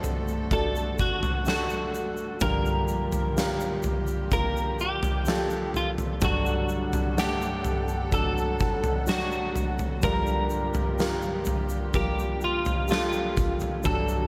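This pop ballad sits in a light, small-room reverb, with a huge arena drum kit pushed up front: a punchy kick, a medium-tuned snare and toms ring out with a hall-like size. A clean, compressed electric guitar carries the melody in a narrow range, also up front and shimmering with an ensemble chorus. Beneath it, a polished, present grand piano supplies the accompaniment, while a very quiet, full-bodied steel-string acoustic guitar picks arpeggios. A dark, woody string section holds sustained chords in the background with a soft attack and light vibrato, and a grainy, bright tube shaker adds texture from behind. Cut from a longer piece, the harmony alternates between D/G and Gm7, giving the passage an emotional, longing mood.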